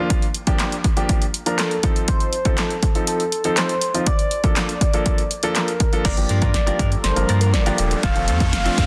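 A dense, heavily limited modern master with light reverb and digital ambience frames this driving, energetic dance-pop excerpt at 121 BPM in G minor. An intimate concert grand piano with audible action noise and sidechain pumping opens the accompaniment. It is joined almost at once by a punchy, overdriven analog drum machine up front, with kick, snare, hi-hat, handclaps and crash cymbal. From 1.6 seconds a round, gentle FM lead with a keys-like tone, vibrato, chorus and dub echo carries the melody over chords moving from Gm7 through F7 to Bbmaj7. At 6.1 seconds a build-up with a drum fill begins as a deep sine sub bass and a shimmering, retro pulse-width pad in the background enter, both pumping with the sidechain. A bright, twangy twelve-string electric guitar riff with lush chorus has slipped in just before them. A riser in the background adds lift toward the close, where the harmony lands on F.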